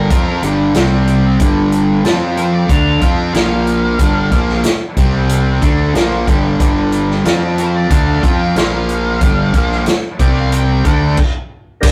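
In a straight 4/4 groove, this gritty, brooding blues rock and southern rock excerpt pairs an up-front vintage drum kit, with its punchy kick and dark cymbals, with a growling, overdriven fingered bass and a bright, double-tracked distorted guitar riff beneath a dusky octave-fuzz lead melody, all in a rough rehearsal-room sound, until the guitars cut out at 11.2 seconds and a thick tonewheel organ chord with key click and slow rotary swirl sounds at 11.8 seconds.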